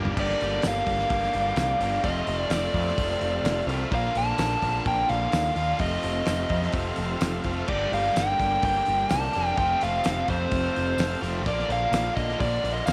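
A double-tracked overdriven guitar riff, a growling overdriven picked bass and a very quiet, shouting tonewheel organ holding sustained chords through a slow rotary speaker open this gritty, driving classic rock excerpt alongside a drum fill on a damped, dry 70s kit with a fat snare and tight kick, before a biting, up-front lead guitar takes the melody at 0.2 seconds and a jingly tambourine sits in the background from 0.6 seconds, over a Gm, F, Bb, F progression in a small room with spring reverb.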